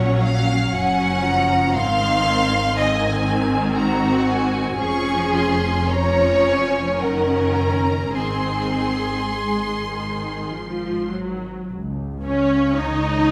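Lyrical and warm, this brief excerpt from a slow, rubato romantic movement in 3/4 sets a focused, vibrato-laden violin melody above a second violin line, with the up-front viola section adding soft-attack portamento, bowed double basses giving a rich foundation and smooth cellos sitting in the background, all bathed in a church-like hall's reverb.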